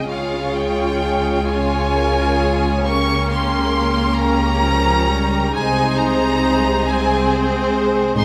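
In a rubato 6/8, this serene excerpt from a slow romantic movement for string orchestra has an up-front, focused violin section singing the melody high above a second violin line, with a distant, lush viola section filling in the accompaniment. Rich cellos and double basses bowed smoothly with vibrato anchor the bass. All five sections play together throughout the 8.2 seconds in the wet reverb of a scoring stage, moving through Db, Bbm69/Db and Ab/C.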